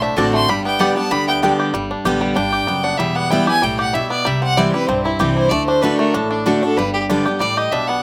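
A dry, open-air recording captures a lively, driving bluegrass passage cut from a longer piece, with a clear, focused bowed fiddle up front carrying the melody and taking a solo from 1.7 seconds. A bright, full-bodied dreadnought guitar sits equally forward, while a twangy, percussive banjo plays arpeggios and a thumpy gut-string upright bass anchors the low end through the G, Em, C and D changes. In the opening moments, a very quiet, nasal slide resonator guitar adds a brief second line until 1.4 seconds, and a mandolin in the background adds short double-string stabs with slapback echo.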